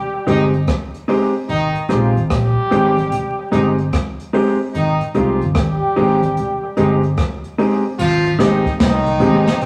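An up-front horn section with light vibrato carries a second line through this laid-back, sunny roots reggae excerpt at 74 BPM in Ab major with a swung sixteenth feel, joined by woody upright piano stabs, a dark, clean guitar tucked in the background, a round, punchy muted electric bass, a brushed drum kit with a boomy kick and analog delay, and very quiet, bright congas, while a soft, flute-like tonewheel organ slips in at 8.2 s, the mix sitting in a wet stone-room reverb with vinyl crackle and rough rehearsal-room ambience.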